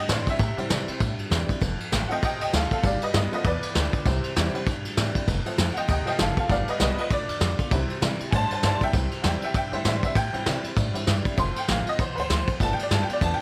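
A swung 4/4 beat at 197 BPM drives this rowdy, upbeat rockabilly piece in C major, with a brushed drum kit up front, its punchy kick under dark cymbals, a woody, thumpy pizzicato upright bass, and a full-bodied picked dreadnought acoustic guitar in the background, while a detuned, jangly honky-tonk upright piano takes a bright solo over C, F and G7 changes from 0.0 to 13.4 seconds, inside a small room's ambience.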